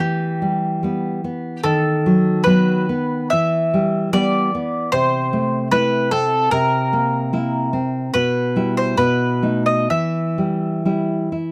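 Yearning and solemn, this romantic duo for mandolin and classical guitar moves with a rubato feel at 62-77 BPM in 4/4, in E minor, and is cut from a longer piece. The bright, double-strung bowl-back mandolin carries the picked melody up front, while the full-bodied, fingerpicked nylon-string guitar gives deep classical accompaniment through a progression from Em to B7/D#, Am/C, C7, B7 and back to Em at 9.9 seconds. The sound is dry and close, like a 1970s studio recording with little reverb.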